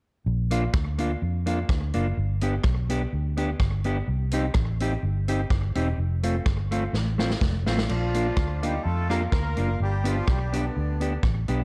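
A round, foam-muted electric bass opens this joyful, bouncy ska excerpt at 0.3 s, sitting up front with a dark, amped tone. A mellow, clean electric guitar and a vintage acoustic drum kit join almost at once, both carrying a slapback echo. The kit has a punchy kick, a medium-tuned snare, rim clicks, hi-hat and crash, all with a rolled-off top and a natural studio-room character. A drum fill leads into a new section at 7.9 s, where a horn section takes the melody with light vibrato, loose pop-style phrasing and octave doubling, also touched by slapback echo. The whole recording has a dark, warm production with light reverb and a small-room ambience.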